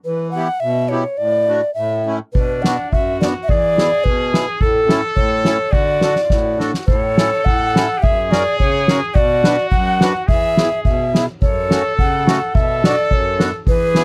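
Festive and bouncy, this alpine folk dance-band piece moves at 106 BPM in 2/4 with a loose, rubato feel, beginning in D major and shifting to A major at 6.9 seconds. A breathy, bright clay alto ocarina carries the melody from the start with vibrato, a soft attack and an unsteady tone. A reedy accordion with slow beating supplies the accompaniment underneath. At 2.4 seconds a clear trumpet enters on a second line with light vibrato, sounding distant and roomy in a classical style, while an up-front acoustic drum kit played with soft mallets joins at the same moment, its dark cymbals, fat snare and boomy kick ringing in a big room and a drum fill leading into the key change. The dry, close 1970s-style studio sound carries light reverb, and the clip is cut from a longer piece.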